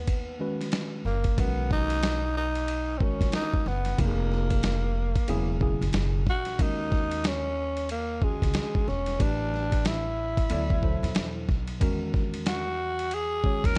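A growling, breathy tenor saxophone sits up front with a raspy jazz solo full of scooped notes in this cool jazz-hop piece at 92 BPM in B major, swung on the sixteenths. Woody, dark pizzicato upright bass and a dusty sampler-style drum kit with a thumpy kick and vintage 12-bit grit, re-recorded in a large room, start at 0.0 and 0.1 seconds, and a worn, slightly out-of-tune tine electric piano joins at 0.4 seconds. The dry mix moves through chords such as Bmaj7, D#m7 and D9, in an excerpt cut from a longer piece.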